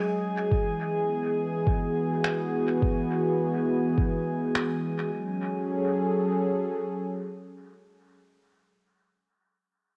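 A swung 4/4 groove is carried by a muffled, thumpy, pitched-down kick drum sitting up front, joined at 2.2 seconds by quieter, tape-toned finger snaps trailing dub echo, in this deep, hazy ambient dub excerpt. Alongside them a detuned sawtooth pad with soft attack and chorus holds mellow sustained chords throughout, while a faint, glassy sine texture of drifting overtones hovers in its own reverb until 5.1 seconds. The whole has a light-room, cassette-recorded softness, with the pad continuing on after the drums fall away.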